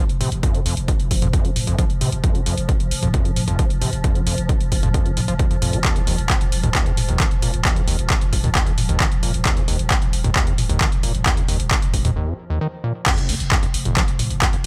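Dark and relentless, this driving peak-time techno excerpt runs at 133 BPM in a straight 4/4, cut from a longer piece. A punchy analog kick drum sits up front, and beside it a layered, overdriven techno kit supplies hi-hat, handclaps, toms and crash cymbal, with sidechain pumping on the toms, hats and cymbals. A squelchy, gritty acid bass built on a resonant square wave plays a distorted, plucky riff with sidechain pumping, while a growling, buzzy 808-style bass sits in the background beneath a low-pass filter and tube saturation. A swarming, detuned drone holds F3 in the background, its granular texture evolving under built-in reverb and pumping with the sidechain. The mix stays dry overall, with a power chord on Eb appearing at 5.8 seconds, a break from 12.2 seconds, and a drop landing at 13.1 seconds.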